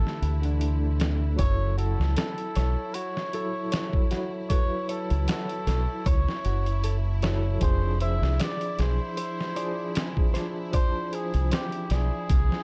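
A slow 77 BPM trip hop groove with a lightly swung 16th-note feel sets a dark, cinematic mood: a gritty, pitched-down sampler kit with a thumpy kick and a round, punchy dub bass sit up front, while a veiled, breathy cup-muted trumpet carries the melody through dub echo over a barky, overdriven electric piano with fast tremolo and tape echo; lush bowed strings hold chords in the background, and a clean, direct electric guitar picks arpeggios with tape echo from 1.4 s, as the harmony moves from Dsus2 through F#m7 to Fm6 in a dark, warm production.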